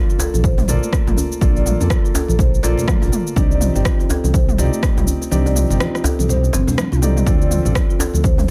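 A punchy, overdriven electronic kick sits up front in this warm, earthy afro house excerpt at 123 BPM in 4/4, with a 59% swing on the sixteenths. Beside it, a smooth, mellow synth bass blending sawtooth and triangle tones pumps against the kick and carries the low end through Bbmaj7, Cmadd9 and Dm7. A woody marimba played with soft mallets spins round, dark arpeggios, while a felt-muted upright piano adds soft, intimate stabs with audible action noise and a vintage character; both pump with the sidechain and trail digital delay echoes. A layered deep house kit of rim click, shaker and toms, also overdriven, drives the groove with a djembe carrying metal rattles in the background and distant, very quiet congas. The kick drops out at 5.3 seconds, a drum fill arrives at 6.8 seconds, and the kick returns at 7.3 seconds in a dry mix.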